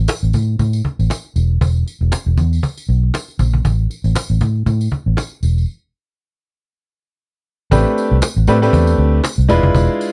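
A round, foam-muted electric bass anchors this slick, late-night early-eighties boogie funk excerpt in A minor at 118 BPM with a swung sixteenth feel, backed by a woody cajon with faint snares and a jingly tambourine, before a break at 5.7 seconds gives way at 7.7 seconds to a clear, intimate baby grand piano, with its action noise audible, moving from Am11 to E7b9 in a dry, close 1970s-style studio sound.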